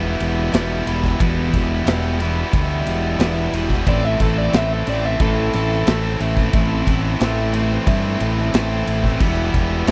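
A swaggering, brooding classic rock excerpt in E minor at 90 BPM opens with a bright, double-tracked distorted electric guitar riff up front, a growling, round fingered electric bass and a shimmering, octave-doubled twelve-string acoustic guitar picked in the background, joined at 0.2 seconds by a big rock drum kit with a punchy kick and medium-tuned snare, while a crunchy overdriven guitar adds a higher second line from 3.9 to 6.2 seconds as the chords move from Em to Am and back, all captured in a dry, close 1970s-style studio sound.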